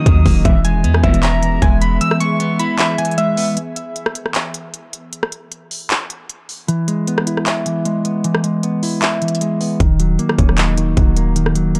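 A deep, boomy 808-style bass anchors this melancholic, menacing half-time trap excerpt at 154 BPM, alongside an up-front trap drum kit of hard-clipped kick, crisp hats, handclaps and rim clicks, a clean picked electric guitar through a low-pass filter, soft round electric-piano-like synth keys with chorus and delay, an ethereal detuned pad, and brief distant bowed string stabs, before the kick mutes at 2.0 s, a break opens at 3.6 s with a filter sweep on the guitar, and the bass returns at 9.8 s in a dark, dry mix.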